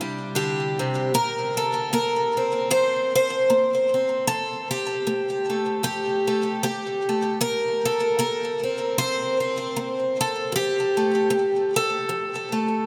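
A dreamy, reverb-soaked sound fills this recording, with the lone guitar sitting up front inside a moderate cathedral-like space whose decay stretches to about 6.5 seconds. It is a gentle, pastoral folk piece for solo fingerstyle twelve-string acoustic guitar, moving at an unhurried 77 BPM in 4/4 with a light swing on the eighth notes. The picked strings ring out shimmering and octave-doubled, with a slightly boxy parlour character, an audible finger squeak and a touch of delay trailing each phrase. The harmony opens on Cadd9 before settling at 1.2 seconds into a calm alternation of Bbsus2 and Fadd9, which keeps the mood open and suspended. The guitar ranges from F2 up to C5, and the passage, cut from a longer performance, closes at 12.9 seconds.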